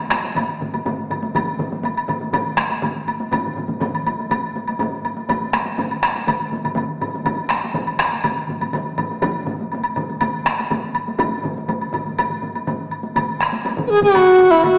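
The recording has the worn, warbling quality of old cassette tape, with a drifting pitch and a small-speaker sound, set inside the reverb of a large scoring stage. This driving, powerful passage of Japanese traditional taiko drumming, cut from a longer piece, moves in a straight four-beat metre. An up-front woodblock clicks with a woody tone throughout, while a solo taiko played with hard sticks rings out in a lively room. Several taiko ensembles build the mass of the sound: one, struck with hard sticks, is compressed and saturated, and two others use heavy sticks in a small room, one of them sitting in the background and dropping out at 12.8 seconds. The music moves into a new section at 13.2 seconds, and at 13.9 seconds a mellow large dizi enters as the loudest part, its bamboo tone pure yet edged by a buzzing membrane, with a crisp, chiffy attack and vibrato.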